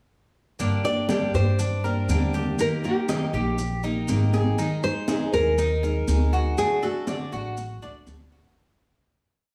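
A straight 4/4 pulse at 120 BPM drives this short, danceable Cuban son and guajira piece in G phrygian, with the upright bass playing a growly, woody pizzicato tumbao that anticipates the chords as they move from Gm to Eb, Absus2 and D. The bass sits up front alongside a full-bodied jumbo steel-string acoustic guitar, strummed with muted slaps, while a bright, metallic Cuban tres picks an arpeggiated guajeo on double strings, some of them octave-doubled. High-tuned congas ring with slaps and open strokes from soft hands, sounding distant in a large room in the background, and grainy, mellow maracas shake in a small room. Entering at 0.8 s, a fingerpicked classical nylon-string guitar carries a warm, motif-based melody of hook phrases, bathed in plate reverb, and it stops at 7.5 s. The whole verse sits in a light small-room ambience before fading out between 6.6 and 8.6 seconds.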